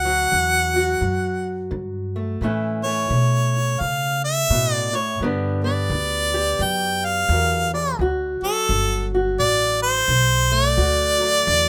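A rough home-demo sound in a moderate studio room frames this swaggering, laid-back slice of acoustic country blues, where a clear, close-miked harmonica carries the swung melody up front with light vibrato and scooped jazz-style notes over a boxy, fingerpicked parlour steel-string guitar and a woody, growly pizzicato upright bass moving through D, A and G.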